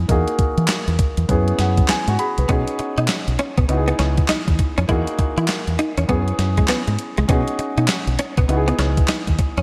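This R&B track in the new jack swing style is upbeat and flirty, moving at 100 BPM in 4/4 with a swung sixteenth-note feel in B major. A crisp, sampler-style drum machine sits up front with a thumpy kick, fat snare, hi-hat and handclaps, given a tape-tinged character and gated reverb. A deep, round fingered electric bass holds the low end with a dark, punchy tone, while a warm grand piano supplies the chords and plays a fill from 1.3 to 2.5 seconds. At 2.5 seconds a clean, picked electric guitar enters with a compressed riff thickened by ensemble chorus. The harmony cycles through Emaj9#11, F#9sus4, B69 and C#m9, set in bright 1980s-style digital production with light reverb.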